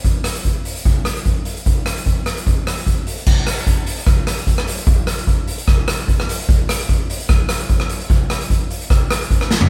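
Recorded live in one room with light reverb, this short cut from a longer calypso piece has an airy, polished sound, with a street-band drum kit placed up front in a big acoustic space. At 149 BPM in a straight 4/4, the kit carries a carefree, festive mood across crash cymbal, hi-hat, boomy kick, rim click, a medium-tuned snare and toms, its cymbals sitting on the dark side. The groove moves into a new section at 3.3 seconds and closes with a drum fill at 9.5 seconds.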